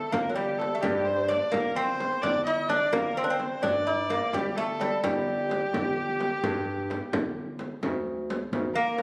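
Passionate and stately, this short Persian modal ensemble passage moves at 86 beats per minute in a straight 6/8, set in G avaz esfahan and cut from a longer piece. A mellow, fingerpicked lute carries the melody up front, its delicate double gut strings ringing with some octave-doubled courses. A single bowed kamancheh plays a second line just as close, its clear, focused tone shaped by vibrato and portamento. Beneath them, a thick, growling FM bass with a fast attack sustains low notes from 0.1 seconds until 8.7 seconds. A frame drum struck with hard hands keeps time alongside a very quiet, deep tombak, both heard in a small-room sound, and a drum fill arrives at 1.8 seconds. The whole ensemble sits in a wet recital-hall reverb, captured on a phone in the room with compression, and a brief new section opens at 7.8 seconds.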